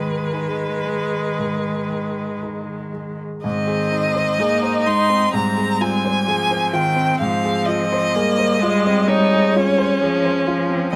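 A violin, up front with focused vibrato, carries a melancholic, solemn melody over a cello's second line, viola accompaniment and an intimate grand piano with audible action noise, in this excerpt from a slow romantic piano quartet movement in G# minor that moves at 54-67 BPM with rubato, its rich bowed strings and clear piano set in light reverb.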